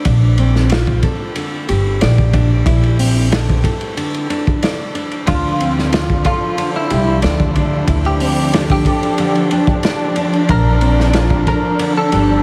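A dreamy, reverb-soaked mix with a huge ambient wash and a bed of vinyl crackle frames this cinematic, smoky trip hop excerpt at 92 BPM, moving from Bb to Dm and then Bb6. A fingerpicked nylon-string guitar plays full-bodied arpeggios with audible finger squeak through tape echo, over a crunchy, punchy breakbeat kit with dark cymbals and a woody pizzicato upright bass sitting up front with tube saturation. At 5.3 seconds a clean, scooped electric guitar melody arrives with chorus and tape echo, joined by a veiled, con sordino string section holding distant sustained chords roughened by 12-bit sampler grit.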